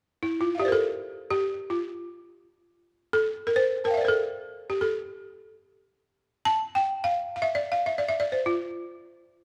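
West African traditional music in free time, this short excerpt from a longer piece has a warm, flowing mood and sits in F major. A solo balafon carries everything, entering at 0.2 seconds and ringing until 9.0 seconds, moving between E4 and A5 over a held F harmony. Its tone is woody and full, struck with rubber mallets, with a characteristic buzzing edge to each note. Close-miked and placed up front, the instrument sounds dry and immediate even as a moderate recital-hall reverb, lasting about 1.6 seconds, gives the space around it a gentle bloom.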